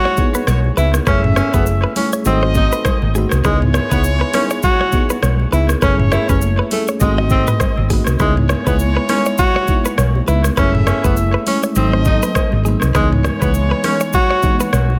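The mix is dry on room sound but heavy with echo, as analog delay trails the saxophone, horns, guitar, electric piano and drums. This sultry, mellow afrobeats cut rides a swung sixteenth-note feel over a looping minor progression of C#m9, F#m9 and G#7b9 chords. A breathy tenor saxophone carries the jazz-style melody with light vibrato, scooped notes and a smooth top, while a clear, loosely played pop-style horn section adds a second line. Underneath, an FM electric piano layered with a soft pad gives lush, dreamy, detuned chords with chorus and a fast, decaying attack, and a clean, scooped electric guitar picks a compressed riff in the background. The electronic, produced drum kit sits up front with a knocking kick, metallic hats, rim click, shaker and toms, joined by faint, high-tuned congas played with soft hands in a distant room. A dark, round hollow-body bass enters at 0.5 s and anchors the low end, and the whole passage is cut from a longer piece.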